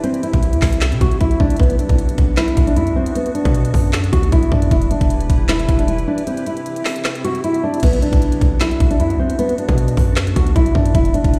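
Dark and brooding, this half-time trap cut comes from a longer hip hop piece and moves through C, Bm and Em before returning to C and Bm. A thumb-plucked nylon-string guitar carries the melody up front, its deep classical tone shaded by a low-pass filter and delay. Beneath it, a glassy FM pad holds sustained chords with a slow attack and long release, softened by ensemble chorus and its own reverb into an ethereal, mellow bed. The electronic trap kit sits forward with a knocking kick, woody snare, crisp hi-hats, handclaps and crash cymbal, while a hard-hitting 808-style bass enters at 0.3 seconds with a punchy sine body, a noise layer and a fast attack that decays. A break arrives at 6.3 seconds before the opening section returns at 7.8 seconds, and the whole mix sounds as if played on a big sound system in a bare room with a large studio reverb.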